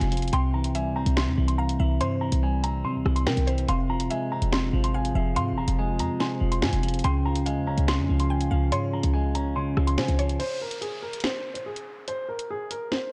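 Drill hip hop in a half-time feel, tense and cold, with a dark baby grand piano carrying the mellow, intimate melody through a low-pass filter and digital delay, its action noise audible, while a clean, twangy electric guitar sits up front in accompaniment and a punchy, tight 808-style bass thumps beneath. A sharp drill drum kit with bright hi-hats, snare, rim clicks, finger snaps and crash carries a gritty 12-bit sampler texture, as a woody, chorused mallet-like synth pluck traces a second line in the background over a progression moving from C to Fm and Db, and a warbly, nostalgic tape-like pad enters with sustained chords at 3.7 seconds. At 10.4 seconds the band drops into a break where only the piano, drums and a background downlifter carry this excerpt to its cut, all wrapped in light digital ambience.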